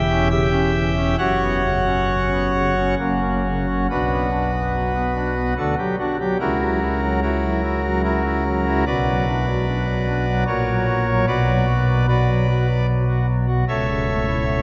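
Bathed in a long cathedral reverb with a dulled, muted top end, this brief excerpt from a longer classical organ chorale moves in a slow, rubato 3/4 at 64 to 76 BPM in B minor, its mood dark and solemn. A solo pipe organ sits up front on a nasal cornet stop with romantic voicing, spanning from a deep C#1 to G5. A diminished opening settles onto F# before the music turns at 3.9 seconds to B minor, then moves through D and F#7 harmonies and closes on A over C# at 13.7 seconds.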